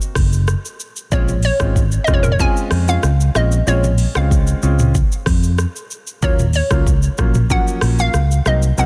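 Dry and dense, this short afrobeats cut from a longer piece carries a heavily limited modern master with little room sound around it. At 94 BPM in a straight 4/4 and set in Bb minor, the mood is hypnotic and sultry. An electronic afro-pop drum kit sits up front from the start, with a deep kick, metallic hi-hats, rim clicks, shaker and toms, plus a touch of soft clipping on the snare. A hollow, bouncy square-wave pluck carries the melody, its detuned, sawtooth-tinged tone shaped by ring modulation, a filter sweep, chorus and a fast attack followed by a decaying tail. A growly, amped fingered electric bass joins at 0.2 seconds and sits prominently in the mix, while a clear, natural grand piano enters at 1.1 seconds with quiet accompaniment. The harmony opens on a rootless Cdim, settles on Bbm9 and moves to Ebm7 at 6.2 seconds.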